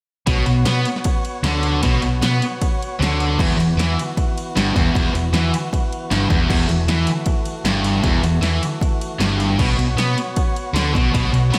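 An up-front analog drum machine drives this aggressive hard rock excerpt in B minor at 155 BPM in a straight 4/4, its dry kick and snare hitting with real punch beneath crash and ride cymbals. Two picked, high-gain electric guitars grind out a riff together: one bright and distorted, the other scooped and carrying a slapback echo. A fingered electric bass adds a dark, round, amped low end, while an overdriven tonewheel organ sits further back with thick, gritty sustained chords marked by key click, percussive third-harmonic attack, vibrato and a subtle chorus. All five parts play from 0.3 to 11.6 seconds in a single section, moving from B minor to an E power chord at 3.4 seconds and back to B minor at 9.6 seconds. A moderate scoring-stage reverb gives the whole mix a big arena sound.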